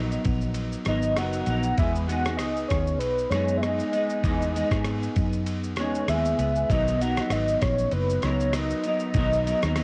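A soft, octave-layered synth lead opens the excerpt at once, its sustained, round tone gently phased and chorused with a cassette tape echo trailing its melody between B4 and F#5. Alongside it from the start, an electric guitar through a small old amp plays accompaniment, sitting up front with a bright, twangy, slightly broken-up edge, thickened by ensemble chorus and a warbly pitch drift. A vintage muted fingered electric bass anchors the low end with a dark, foam-muted roundness and a touch of tube saturation, while a dusty soul sampler-style kit joins at 0.1 seconds with a thumpy kick, ride cymbal, rim click and shaker, all compressed and gritty. This is dreamy, laid-back indie and bedroom pop in B major at 98 BPM in 4/4, with a light swing on the sixteenths. The harmony drifts from Bmaj7 to Emaj7 at 1.8 seconds and back to Bmaj7 at 6.7 seconds, and the whole excerpt carries the hazy, muffled character of a home cassette recording with light reverb.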